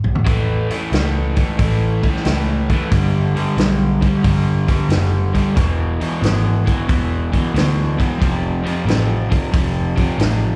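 Swaggering and raunchy, this short cut from a longer piece sits between blues rock power trio and southern rock, rolling at 91 BPM in 4/4 with a heavy swing on the eighths. A vintage drum kit opens with a fill at 0.0 seconds, its punchy kick, medium-tuned snare, hi-hat and toms sitting up front with a rolled-off top. A crunchy overdriven guitar comes in at 0.2 seconds with a bright, double-tracked picked riff, touched with slapback echo, over chords moving through A, G, E and F. Underneath, a vintage muted picked electric bass gives a dark, round, foam-muted low end. The sound is that of a live gig heard through the venue's PA, with light reverb and the ambience of a small club.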